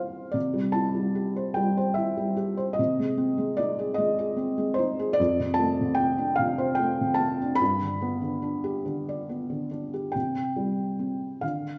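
Classical solo piano in a lyrical vein, this tender, peaceful passage is cut from a longer piece and moves at 49 BPM in dotted quarters, in a 6/8 metre with uneven, rubato beats. A felt-muted upright piano carries everything alone, sitting up front with a soft, mellow, intimate voice, thick felt dulling its hammers and audible action noise giving it a close, private character. A brief felt piano fill opens the recording, and by 0.4 seconds the harmony settles on C before drifting through Ab/C, F6 and G, spanning from F2 up to B5. At 10.2 seconds the music turns to a new section on C5, which closes the recording at 11.8 seconds. The instrument's short sustain is softened by the wet reverb of a church or concert hall, a 1.4-second tail that wraps the gentle playing in space, and the piano is tuned slightly high, to A4 = 441 Hz.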